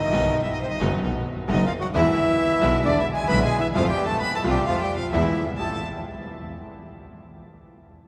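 Melancholic and passionate, this brief tango fragment at 132 BPM in 4/4 moves with a rubato feel as a reedy, dark bandoneon carries the melody up front over chords from B through E7 and F to Am7, joined by a close, expressive bowed violin second line with vibrato and portamento, a woody upright piano accompaniment set in the background, an earthy, biting bowed double bass, and very quiet, distant symphonic string stabs entering at 0.1 seconds, the ensemble heard within a long, wet cathedral reverb in a church or concert hall, with some lossy compression artefacts.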